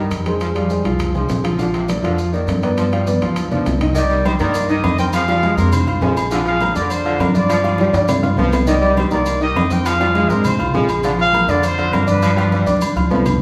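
Passionate and fiery, this salsa excerpt opens with a warm, intimate concert grand piano, a woody, dark pizzicato upright bass, a brilliant trombone section on the second line, soft-handed congas set distant in the background, grainy maracas and close, ringing timbales and agogo bells, before a mellow, tightly punchy trumpet section takes the melody at 4.0 seconds over a cycling Fm, Bb and G7 progression, drum fills and a wet hall reverb.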